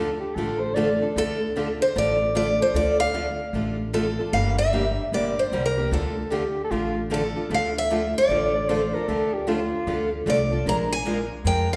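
Bittersweet and virtuosic, this excerpt of acoustic string swing moves with a brisk, swung 4/4 feel as a bright, up-front picked steel-string guitar carries the melody from 1.2 seconds over two picked accompaniment guitars, one full-bodied jumbo with finger squeak and the other a bright concert guitar sitting in the background. A mellow soprano saxophone with vibrato, soft attack and scooped notes adds a smooth second line, heard briefly at the start and again from 6.3 to 10.2 seconds, while a woody, thumpy pizzicato upright bass on gut strings anchors the low end. The chords move from Dm to Gm and back before a closing Bb7, all set in the lush reverb of a recital hall.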